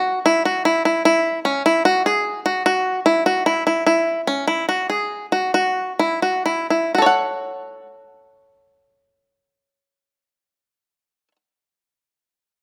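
Closely miked and detailed within a moderate recital-hall reverb, this restless, pensive excerpt of contemporary instrumental music in F# minor and 7/4 sets a bright, twangy, percussive bluegrass banjo up front, played with fingerpicks in arpeggios from C#4 to F#5 at 124-151 BPM over chords moving from F#7(no3) to C#m and on to F#m at 7.0 s, with a slowing between 3.5 and 7.0 s.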